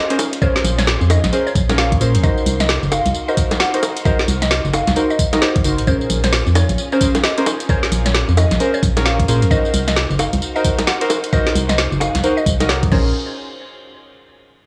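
A hollow, organ-like FM bass pumps up front from 0.6 seconds beside a knocking electronic kick, anchoring this soulful, skippy two-step garage piece at 132 BPM in Bb minor, swung on the sixteenths over a drop that moves between Bbm9 and Cm7b5. A garage kit with a woody snare, metallic hats, bongos, tambourine and crash sits close, re-recorded in a small room, while deep, mellow chord stabs with lush chorus and tape echo carry the harmony. In the background, a round, warbling mallet-like pluck plays the melody through chorus and tape echo, and a silky string machine holds chords with ensemble chorus, 12-bit sampler grit and sidechain pumping, over a dry, gritty cassette recording with light reverb.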